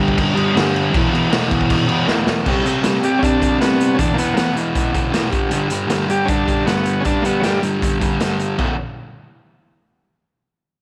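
A fuzz guitar opens the clip at 0.0 seconds with a double-tracked, picked power-chord riff moving through G5, E5 and C5, joined almost at once by a raw, gritty garage drum kit with a punchy kick, medium-tuned snare, hi-hat and crash, set in a small pumping room. After a drum fill just before 2.5 seconds, a buzzy, overdriven vintage combo organ with light vibrato carries a solo melody from 3.0 seconds alongside the up-front guitar. It's a rowdy, raw garage rock cut at 157 BPM in a straight 4/4, with light reverb and a saturated, rolled-off sound on the drums.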